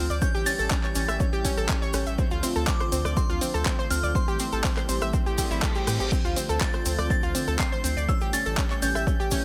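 Progressive house at 122 BPM in D minor, this bittersweet, dreamy excerpt moves through A7, Dm7 and Am7 over a punchy, up-front electronic kick and a layered deep house kit of crash, handclaps, hi-hat and rim click, with a grainy tube shaker tucked in the background. A round, dark analog bass, a smooth detuned pad holding sustained chords and a chorused sawtooth pluck playing arpeggios through delay each pump with the sidechain, while a crystalline FM bell carries the melody through chorus, phaser, delay and vintage 12-bit sampler grit. A very quiet glassy texture of drifting sine overtones hovers high in register around G6, and a reverse cymbal appears from 5.3 to 6.1 seconds, within a digital ambience.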